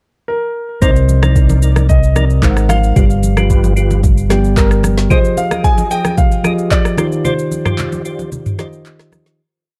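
A steady shaker, soft deep kick and syncopated rim clicks drive this amapiano groove at 112 BPM in a straight 4/4, with handclaps, a woody snare and toms filling out the up-front, tape-warm electronic kit. The mood is soulful and hypnotic, set in C minor over a dark production, with chords moving from Cm9 through Ab9 and G7 to Fm9 and Ebmaj13. A grand piano with deep bass and short sustain opens in the pickup bar, playing a motif-based melody of call phrases touched with delay. From 0.8 s a mellow tine electric piano pushes spread chords with grace notes, a round, percussive tonewheel organ adds short syncopated stabs through chorus vibrato, a slow rotary speaker and delay, and bright, thin-skinned congas interlock in the background with hard hands and a vintage, band-limited tone. A fingered electric bass with an envelope filter holds sustained, up-front notes until 5.1 s, and a break with a fade-out begins at 7.2 s.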